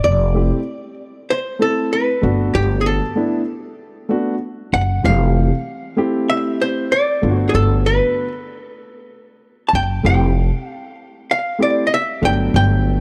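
A growly, thumpy pizzicato upright bass sits up front in this relaxed, swung jazz-hop clip alongside a clean, compressed hollow-body archtop guitar carrying the melody with slapback echo. From 0.3 seconds they are joined by a mellow vintage grand piano whose audible action noise adds intimacy, the harmony moving between Fmaj7, Gmaj9 and Fmaj9 in a dark production with light small-room reverb.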